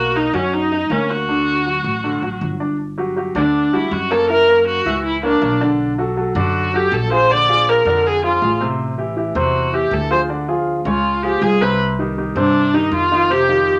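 The excerpt opens with viola, baby grand piano and upright bass all sounding at once, setting a sunny, danceable Afro-Cuban jazz groove at 160 BPM in a straight 4/4. The bowed viola carries the melody up front, its tone rich, smooth and even, with vibrato. Beneath it, the warm, natural-sounding piano supplies accompaniment with a short sustain, while the pizzicato upright bass adds a woody, thumpy low end from its steel strings. After a brief opening passage, the music moves at 2.8 s into a longer section whose harmony roams through chords such as F#7b13, Bb9, Ddim and Cmadd9 before settling on Cmadd9 near the close. The players sit in a wet studio ambience with a short reverb tail, and the viola stops at 13.7 s, just before the piano and bass finish at 13.8 s.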